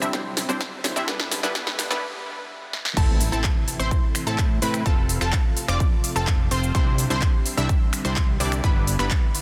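Dense, heavily limited and set in a digital ambience, this excerpt of festival progressive house feels emotional and anthemic from the start. A punchy, up-front electronic kick and a big-room dance kit, re-recorded in a large room, carry a straight pulse; the kit brings crisp hats, cabasa, finger snaps, handclaps, crash cymbal and a soft-clipped snare. A fat, saturated analog bass and a detuned supersaw stab riff both pump with the sidechain, the stab trailing tape echo, while a lush, warbling unison pad holds sustained chords very quietly beneath. A dark baby grand piano adds faint accompaniment until 2.0 seconds, and a quiet riser builds through the opening fill and brief break. At 3.0 seconds the drop lands with an electronic impact, and a bright unison pluck enters with pumping, echoing arpeggios high above as the chords move from A minor through F, Cadd9 and G6.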